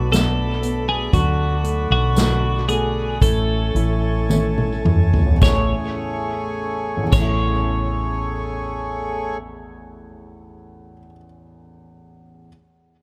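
A tender, emotional pop ballad in A major moves at a slow 53-60 BPM in a straight 4/4, slowing down through its opening seconds as this short excerpt, cut from a longer piece, drifts from Bm7 to Amaj7. A bright, twangy twelve-string electric guitar carries the clean, picked melody with tape echo, while a grand piano with short sustain plays accompaniment, also touched by tape echo. A reedy, breathing harmonium holds sustained chords, and a fingerpicked nylon-string guitar with audible finger squeak sits in the background with full-bodied arpeggios and tape echo. Up front, a growly, round fretless electric bass anchors the low end, and a distant, roomy acoustic drum kit played with bundle sticks, its dark cymbals and tight kick, rolls through a drum fill from 4.3 to 5.4 seconds before dropping out at 7.4 seconds along with a jingly tambourine. The echo-heavy mix carries light reverb and a small room ambience, and the piano rings on alone to close at 12.5 seconds.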